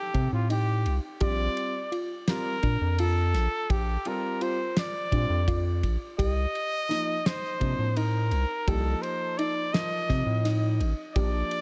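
Progressive instrumental band music in 7/8 at 169 BPM counted in eighths, this driving, tense passage is cut from a longer piece and moves from Cm through Gm7/Bb to Cm7. A breathy, up-front trumpet carries the jazz-style solo melody between F4 and Eb5 with vibrato, touched by digital delay. Beneath it, a tine-like, nasal FM synth pluck with a faint noise layer spins chorused arpeggios from C4 to G4, while a round analog bass, evolving and wave-folded, holds the low end from 0.1 seconds. A damped 70s drum kit plays kick, ride and a fat snare with dark cymbals and a rolled-off top, and a warm, intimate grand piano with audible action noise and long sustain joins the accompaniment at 1.2 seconds. Light reverb and a small-room ambience surround the whole band.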